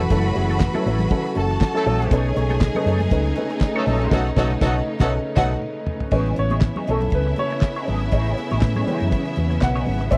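A damped 70s drum kit sits up front with a fat snare, tight kick and rolled-off top, driving this glamorous disco excerpt with crash cymbal, hi-hat, toms and handclaps over a lightly swung 16th-note feel. A round, hollow-body fingered electric bass anchors the low end, while a direct-recorded clean electric guitar adds compressed, picked accompaniment coloured by wah and phaser, and a baby grand piano with audible action noise adds accompaniment. A biting, lush violin section carries a second line above sustained chords from a focused studio string section, with high-tuned congas ringing very quietly underneath. A clear, vintage-style horn section punches in with stabs from 1.8 to 5.5 seconds, overlapping a band accent that begins at 4.1 seconds, and a drum fill follows at 5.6 seconds. At 6.1 seconds the harmony moves to Amaj9#11 and the piano takes a solo through to the end, all captured in a dry, close 1970s-style studio sound.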